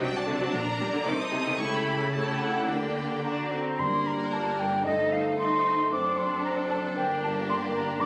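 Rich, vibrato-laden violins carry a smooth melody over a second violin line, an up-front viola accompaniment and a bass of distant warm cellos and focused double basses in this urgent, restless G minor classical-period orchestral movement at 113 BPM in 2/4. A pure, up-front concert flute joins at 3.2 seconds, and at 3.8 seconds a clear background clarinet, a mellow, roomy bassoon, tight sustained French horn chords and very quiet, round calf-headed timpani fill out the texture, all heard through a phone recording in a reverberant hall with added club reverb and compression.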